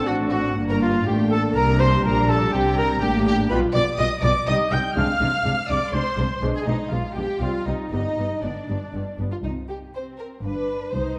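A quick classical-period movement for symphony orchestra, this stormy, dramatic fragment of a longer piece moves at 122 BPM in 3/4 with a rubato feel, starting in G minor and turning toward C minor from 3.5 s. Muted violins carry the melody in a veiled, con sordino tone with vibrato, while a second muted violin line, soft in attack, sits in the background beside a lush, muted viola accompaniment. Muted cellos and double basses bowed with vibrato form the bass, and a mellow French horn section holds sustained chords behind the strings until 8.1 s. A distant, roomy trumpet stands up front with stabs that end at 9.2 s, and a very quiet, hollow silver concert flute adds a pure, crisp-edged second line in the same register as the melody. The harmony passes through darkly coloured chords such as G7b9b13 before closing on C5 and then G7, all set in a wet scoring-stage reverb with a dark production.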